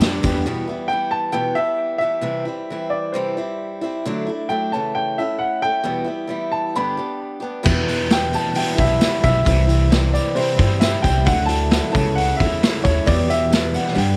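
A hopeful, jangly folk rock and heartland rock excerpt at 133 BPM in 4/4, where a smooth concert grand piano carries the melody through tape echo over a boxy, picked ladder-braced acoustic guitar moving around Em, C, Dadd9 and A/C#. After a brief hit from the whole band at the very start, the full band returns at around 7.7 seconds: a gritty, saturated vintage drum kit with dark cymbals sits up front beside a thumpy, woody pizzicato upright bass, while a double-tracked overdriven guitar riff with harmonic tremolo, a very quiet reedy electric piano and a jingly tambourine fill the background. Light reverb and small room ambience give it a close studio feel.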